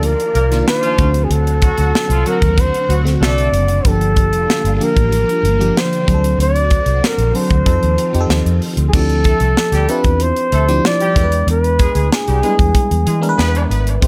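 A straight 4/4 groove from a tight, dry funk drum kit and a dark, round, foam-muted fingered electric bass drives this bittersweet, slick slice of polished 1980s jazz-funk pop. A breathy, whispered flugelhorn carries the melody up front with scooped notes and light vibrato over glassy, bell-like FM electric piano with phaser and subtle chorus, while a swirling, sawtooth string machine holds sustained chords in the background until 8.9 s. A punchy horn section, doubled in octaves with delay, adds a distant second line from 0.3 s and again from 9.2 s.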